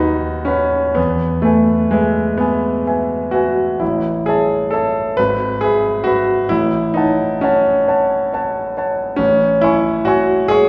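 A romantic classical nocturne for solo piano, melancholic and yearning, unfolding in a slow, flexible rubato lilt of 12/8. The concert grand sounds warm and smooth with a deep, vintage bass, spanning from G#1 up to C#6 and sitting up front even as a wet recital-hall reverb places the listener further back in the room. Cut from a longer piece, the harmony drifts from B/D# through E and A to a closing Amaj7 around 9.2 seconds.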